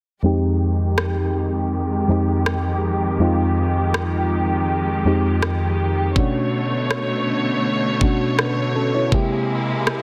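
Dense, heavily limited and lightly reverberant, this excerpt of contemporary R&B at 81 BPM carries a late-night, longing mood as a round, dark FM electric piano with chorus accompanies a lush, bowed string section with vibrato holding chords from Fm9 through Bm9 to C7b13 under a filter sweep, while an electronic drum kit with a knocking kick, rim click and softly clipped snare enters at 1.0 seconds.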